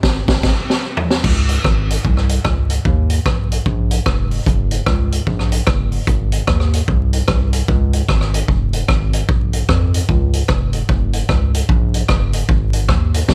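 Swung eighth notes drive this bouncy, upbeat ska groove at 149 BPM in 4/4, set in D-flat major and tuned slightly below standard pitch. It opens with a band accent across the first 1.2 seconds, and a drum fill runs from 0.4 to 1.2 seconds before the main section settles in. The raw garage drum kit sits up front with a gritty, saturated small-room character, pairing a punchy kick and high-tuned snare with hi-hat, rim clicks, toms and crash cymbal under a rolled-off top. Beneath it, a round analog synth bass plays between F1 and F2, its dark, sustained tone shaped by fast attacks, wave-folding and ring modulation over sine, triangle and sawtooth waves. The sound is dry and close, coloured by a layer of vinyl crackle, and the piece is cut from a longer work, with both parts playing throughout its 13.3 seconds.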